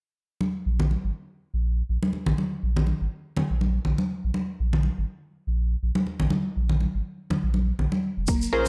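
Afro house at 122 BPM in 4/4 with a 55% swing on the 16ths, set in Bb minor and cut from a longer piece, with a driving, earthy mood. Up-front acoustic congas, medium-tuned with a thick skin and played with hard hands in a live room, open at 0.4 s. A deep, round sine sub bass arrives at 0.7 s, moving between F1 and Bb1 with a fast attack, sidechain pumping and a filter sweep across its whole span. Near 8.3 s the arrangement fills out with a produced electronic kick carrying tape coloring, a grainy, mellow tube shaker, and a bright, woody FM mallet-like pluck playing arpeggios from Bb3 to Bb4 with chorus, cassette-tape character and pumping. Just after, warm analog keys built from detuned pulse and sawtooth waves add decaying, chorused stabs between Db4 and C5. It sits in studio reverb with a dry, gritty hardware sound.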